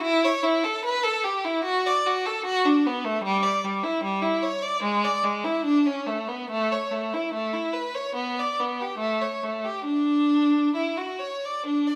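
Set in a stone room with a lingering reverb, this 12-second excerpt from a longer baroque-style suite movement features a single unaccompanied violin, bowed with a focused, clear tone and vibrato, in a radiant, dance-like 4/4 with uneven, rubato beats.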